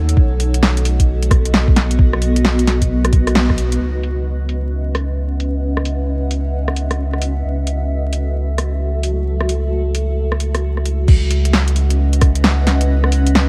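A round, deep sine sub bass sits up front in this nocturnal, ghostly future garage excerpt at 132 BPM in C# minor, its swung 16ths giving the 4/4 pulse a loose feel beneath a cloudy, detuned granular pad that holds blurred chords from B7 through C#m11 and F#m7/C#, with a filter sweep from 3.8 to 11.1 seconds. A layered garage kit with a cracking snare, warm hats, rim clicks and crash sits close but muffled by low-pass filtering, while a soft, tape-tinged electronic kick plays at the start, drops out at 3.6 seconds and returns at 11.1. Vinyl crackle and light reverb lend the small-room sound a haunted haze.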